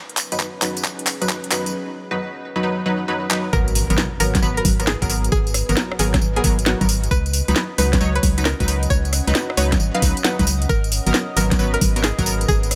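Tape-warm, punchy and up front, this soulful, skippy two-step garage excerpt moves with a heavy 16th-note swing. A deep, moody ambient pad sits in the background throughout, detuned and sustained, with chorus and its own reverb, and it pumps with sidechain compression. The garage kit brings a cracking snare, metallic hats, congas, handclaps, rim clicks and tambourine, with a knocking electronic kick beneath. A sawtooth chord stab with a sub octave plays bright, chorused and delayed as a filter sweep runs over it through the opening build-up, which also carries drum fills. At 3.5 seconds the drop arrives with a very quiet electronic impact, a hollow, organ-like FM bass that pumps in the low end, and a twangy, string-like resonator pluck carrying the melody through phaser, delay and 12-bit sampler grit. The harmony alternates between C#9sus4 and G#m9 in light digital ambience.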